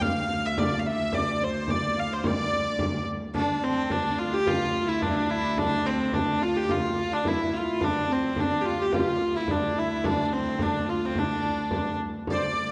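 Set in a wet concert hall with a dark production, this excerpt of a driving, mysterious medieval dance in D minor moves at 108 BPM in a straight 2/4. A nasal, earthy hurdy-gurdy carries the melody up front over a clear, floating viola da gamba drone on D2, while a very quiet, reedy accordion adds a second line and a deep, distant frame drum supplies the percussion. At 3.4 s a rich, pure second viola da gamba enters in the background with its own ringing line, lasting until 12.0 s.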